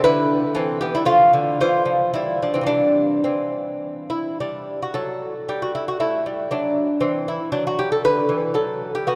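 A long, cathedral-like reverb fills this church or concert hall recording, letting each note hang in the air for seconds after it is plucked. It is a short excerpt, just over nine seconds, cut from a longer baroque-style dance in C major, moving in 3/4 at roughly 105 to 119 BPM with a flexible, rubato feel. A solo lute carries everything, fingerpicked and placed up front, its paired gut strings giving a delicate, warm tone with some strings doubled at the octave, ranging from C3 to C5. The same phrase is heard twice, the second statement beginning at 4.4 seconds. The harmony opens on C and F, passes through Em7 and back to C, then shifts to a rootless Em11 before settling through A5 to D. The mood is radiant and serene, like quiet devotion echoing through stone.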